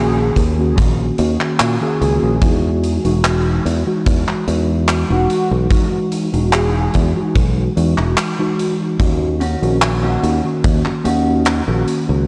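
A velvety synth lead, set back in the mix, carries a chorused, tape-echoed melody in this woozy, faded vaporwave excerpt. Underneath it sits a mellow tine electric piano, clean and warm as if heard through built-in speakers, and a growly, punchy fingered bass placed up front. From 0.4 seconds, a gated 80s kit of handclaps and hi-hat arrives with a hard-hitting kick, all carrying the grit of a vintage 12-bit sampler and ringing in a bright, airy stone room. The harmony drifts from D#m7 to Emaj9 and back. The synth lead drops out at 7.0 seconds, and a dark, compressed electric guitar enters at 9.4 seconds with a fingered riff awash in lush chorus and tape echo. Light reverb and the hazy sheen of cassette tape give the whole a dark, warm cast.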